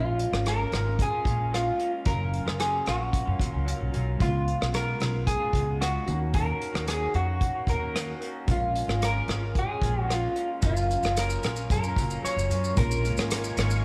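A slightly broken-up, compressed electric guitar through a small old amp carries the melody, its picked lines bathed in lush chorus and a slapback echo, in this lonely, hazy stretch of indie and bedroom pop cut from a longer piece. A second guitar from the same kind of amp plays accompaniment up front, lo-fi and picked, with a warbly pitch drift, while detuned synth keys with a cassette-tape wobble sit mellow in the background. A woody pizzicato upright bass and an unplugged drum kit, played with bundle sticks and a tight kick, keep the straight 112 BPM pulse close and intimate, with hi-hat, rim click and shaker filling out the small room. The harmony cycles through Bbm7, Gbmaj7, Db7 and Ebm7 under light reverb. Near the end, at 13.0 seconds, a silky, slow-blooming string machine with ensemble chorus drifts in behind the band, and a very quiet jingle of tambourine appears at 13.3 seconds as the music returns to Bbm7.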